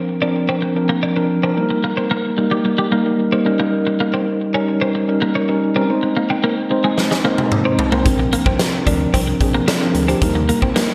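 1980s-style pop at 111 BPM in an uplifting, nostalgic mood, this short cut from a longer piece opens with a mellow, clean tine electric piano playing chords from Bbadd9 through Eb, Eb7 and Ab, joined at 0.2 seconds by a bright, twangy, compressed twelve-string electric guitar riff with analog chorus and delay, before a huge arena drum kit with a punchy kick and a fat snare bursts in on a fill at 7.0 seconds and a round, fast-attack FM bass settles into the background at 8.1 seconds, all bathed in a wet plate reverb and a bright digital production.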